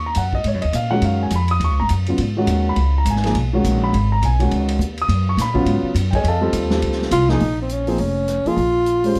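A breathy tenor saxophone, mellow and up front with vibrato, subtone and scooped notes, enters at 7.1 seconds over this brisk, cool and searching modal jazz excerpt in G# dorian at 207 BPM with a swung 4/4 feel. Beneath it, a dark grand piano comps over chords moving from G#9sus4 to F7 and Bbm7, while a thumpy, woody upright bass with gut strings plays pizzicato close to the listener. A distant, roomy big-band drum kit with dark cymbals and a boomy kick swings on hi-hat, ride, snare and rim click, all set in a small room with a dusky production.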